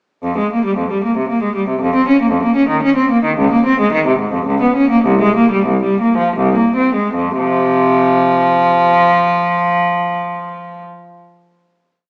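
A lone bowed cello opens this short, solemn baroque-style suite movement in F minor, its rich, reedy gut-string tone sitting up front as period-style broken-chord figuration unfolds across the strings in a rubato 3/4 between 75 and 118 BPM, easing into a slowdown from 2.6 to 7.1 seconds before settling on a final chord, all within a wet recital-hall reverb heard from further back in the room with a small-speaker character.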